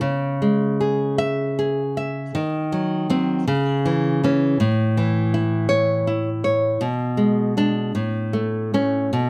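Tender and sunny, this brief excerpt from a romantic solo classical guitar piece in a rubato 6/8 features a bright, fingerpicked nylon-string guitar with fresh strings and audible finger squeak, placed up front in a dark production with light reverb.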